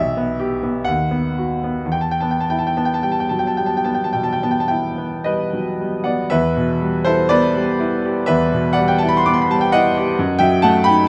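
Heard up front in a moderate recital-hall reverb, a bright, vintage-toned grand piano with long sustain plays alone in this wistful, melancholic romantic nocturne excerpt in E minor, moving with rubato in 4/4 at around 53-67 BPM across a range from B1 to D6, settling from Em/B and B/D# onto Em by 1.9 s, turning to a new section at 6.3 s, and arriving on B7/F# at 10.2 s as the fragment is cut off.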